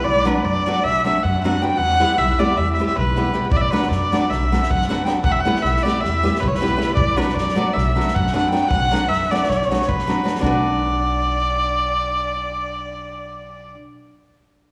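A nasal, earthy erhu leads up front with light vibrato, portamento and an airy bow in this fiery, virtuosic Balkan wedding-band folk passage in 9/8, cut from a longer piece, over fingerpicked flamenco guitar with audible finger squeak, woody, thumpy pizzicato upright bass, and an acoustic kit played with bundle sticks, its punchy kick and medium-tuned snare heard from 3.5 to 10.6 s, all set in a recital-hall reverb.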